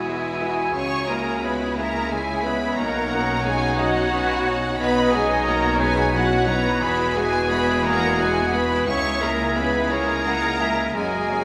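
A sorrowful, longing cinematic film score for full orchestra in a slow, rubato 6/8 at 59 BPM, where a lush, vibrato-rich violin section carries the melody over airy flutes, a distant oboe, a mellow clarinet and a background studio violin section on second lines, with brilliant piano and a focused viola section filling the accompaniment, dark French horns holding sustained chords, cello and double bass sections anchoring the bass, and the whole ensemble bathed in a wet scoring-stage reverb as the harmony moves from Eadd9 through C#m and Badd9 to close on C#madd9 at 8.9 seconds.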